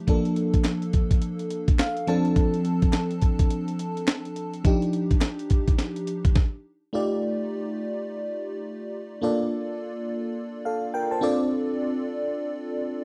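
New jack swing R&B at 105 BPM with a punchy, bouncy 16th-note swing, this excerpt pairs a lush, dreamy FM electric piano with a soft pad layer and chorus, which moves through Bbmaj7, Dm7 and Ebmaj9 chords and plays a fill from 1.5 to 2.4 seconds, with a gritty, pitched-up breakbeat sampler-style drum kit of thumpy kick, high-tuned snare, hi-hat and handclaps that drops out at 6.5 seconds, leaving the keys alone over F13 into Bbmaj7 and Dm7 in a dry, close 1970s-style studio sound with light reverb.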